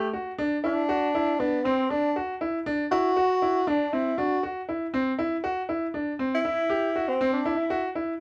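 Set in a straight nine-eight metre, this brief fragment of a progressive instrumental piece feels bright and intricate. A tenor saxophone carries the melody from the first moment as the solo voice, played in a jazz style with vibrato, subtone and scooped notes, its tone warm yet roomy, as if heard from a slight distance. Alongside it, a grand piano spells out arpeggios in a brilliant, open timbre that sits up front in the mix and rings on until about 8.1 seconds. The harmony rests on a Dadd9 chord before moving to C at 4.9 seconds, and the saxophone line closes at around 7.8 seconds. Light reverb and a dark, warm production give the sound a warm glow.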